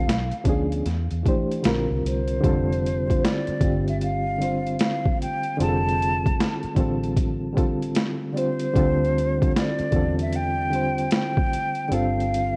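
Cosy and dreamy, this lo-fi hip hop fragment, cut from a longer piece, sets a breathy, hollow flute melody with tape echo over a reedy electric piano shimmering with fast tremolo, a dark, foam-muted fingered bass, and a gritty, pitched-down boom bap kit with a thumpy kick, high-tuned snare and overdriven grit, all steeped in light reverb and the warbling pitch drift of worn cassette tape, until the kick drops out at 11.9 seconds.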